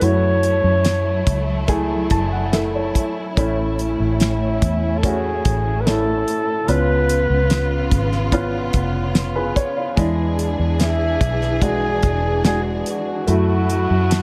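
An emotional, heartbroken pop ballad in F# minor at 72 BPM opens with a breathy, jazz-style flugelhorn singing the melody through tape echo, over a natural-sounding baby grand piano, lush bowed strings with vibrato and portamento, a round, foam-muted electric bass and a dry 70s drum kit with a fat snare and tight kick. The piano slips in a fill from 1.7 to 3.4 seconds, and the harmony moves from F#m7 through A, C#7 and E7 before returning to F#m7. The echo-heavy mix carries light reverb, with the whispered, intimate horn sitting at a distance and the strings placed far back.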